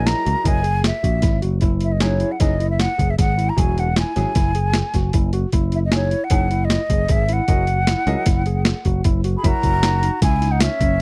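Set in a straight, driving 5/4, this bright progressive instrumental excerpt rides on a boom bap sampler-style drum kit that sits up front, its pitched-down, compressed sound giving a thumpy kick, a high-tuned snare and hi-hat a gritty, tape-toned edge. A picked electric bass, punchy and direct through an amp, shares the foreground, moving low beneath the harmony as it passes from F#13 to C#m and back to F#13 at 7.5 seconds. A breathy, mellow concert flute carries the melody with a soft attack, rolled-off highs and expressive vibrato. Lower in the mix, a clear concert grand piano with open, deep bass provides accompaniment, while an overdriven tine electric piano plays arpeggios through a combo amp with a medium tremolo. At 9.4 seconds a distant, roomy flugelhorn enters with a classical-style second line, its warm tone and vibrato adding warmth to the closing moments. The recording is dry and close, with a 1970s studio character and little reverb.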